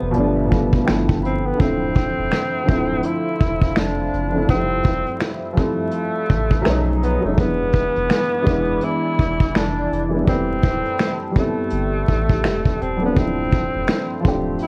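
A cosy, mellow lo-fi hip hop excerpt with a lazy swing, opening on a fill from a dark, woody upright piano whose action noise and slight detuning give it an intimate, worn character while a breathy tenor saxophone carries the subtone melody with vibrato and scooped notes under a plate reverb. A brushed vintage drum kit with finger snaps, a tight kick and a gritty 12-bit sampler edge sits up front, while a round, soft dub sub bass anchors the floor and a deep, moody ambient pad with chorus and phaser glows in the background through chords such as Dm9, Fmaj7 and Am7. The whole recording is coated in warbling old cassette tape, pitch drift and vinyl crackle in a moderate studio room.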